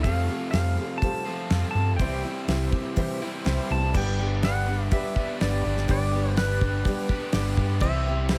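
A straight 4/4 groove at 124 BPM drives this hopeful, open-road folk rock and heartland rock clip in G major, built on a dry, damped 70s drum kit with a fat snare and tight kick up front, a round hollow-body short-scale fingered electric bass, a jumbo picked steel-string acoustic guitar, and a double-tracked crunchy overdriven guitar riff, while a twangy clean lap steel carries the melody with slide and volume swells, a very quiet slow-rotary tonewheel organ holds sustained chords, and a woody upright piano enters at 0.1 s, as the chords move from Fadd9 through C to G inside a small room ambience.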